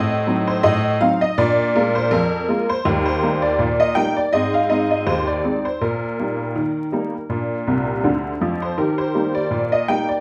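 Lively and cheerful, this short ragtime passage in E-flat major moves at 81 BPM in a swung 2/4, with a detuned, jangly honky-tonk upright piano playing solo up front through a wet studio reverb and vinyl crackle, stepping through chords from Adim7 and Bb7 to Eb before a fill from 7.7 to 8.8 seconds brings it home to Eb.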